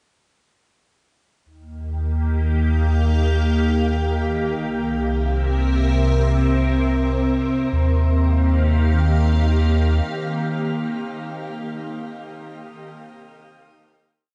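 Ambient piece in free time and Eb major, peaceful and gently warm, with a tuning set slightly high at A4 = 441 Hz. A deep, round sine sub bass arrives first at 1.5 seconds, holding mellow sustained root notes low in the register until it stops at 10.0 seconds. At 2.0 seconds an evolving wavetable pad fades in with a slow attack, sitting up front with morphing, detuned unison tones built from sine and triangle waves and tinged with ring modulation, colored by ensemble chorus, phaser and its own reverb. The pad's slowly shifting sustained chords move from Ebadd9 to C7 and back to Ebadd9, which becomes a held final chord whose long release carries the piece out. A moderate shimmer reverb with a long tail surrounds the sound, and a cassette-tape character rounds off the top end for a soft, hazy finish.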